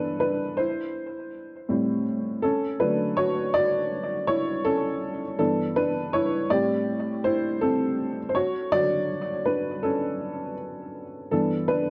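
Swung sixteenths give this short, nostalgic hip hop cut a mellow lilt as a lone upright piano, dark, woody and slightly detuned with audible action noise, sits up front through a low-pass filter and analog delay in a modest studio reverb, cycling through G6, Am7 and Dmaj7 from 0.0 to 11.9 seconds.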